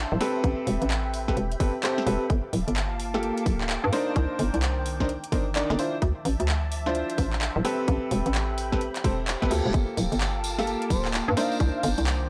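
A skippy two-step garage groove at 129 BPM in 4/4, swung at 63% on the sixteenths, drives this late-night excerpt in G minor, cut from a longer piece. An up-front, tight electronic kick anchors a layered garage kit of handclaps, a woody snare and metallic hi-hats, both touched with studio reverb, while a hollow, bouncy FM bass knocks with punchy, fast-attack, decaying notes. A bright, worn grand piano stabs minor-ninth chords through analog delay, moving from Am9 to Gm9, Cm9 and Dm9, above a silky, mellow string machine that sits in the background with phaser, ensemble chorus and sidechain pumping. Shortly after the start, a very quiet, warbling tape-like pad adds a nostalgic, detuned lo-fi haze. A reverse cymbal sounds at 9.2 seconds, a jingly, distant tambourine joins at 9.7 seconds, and at 10.9 seconds a dark, veiled trumpet with a bucket mute plays a brief solo phrase in classical style with light vibrato and analog delay. 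The sound is dry and gritty, with little reverb, transformer saturation and cassette tape colouring.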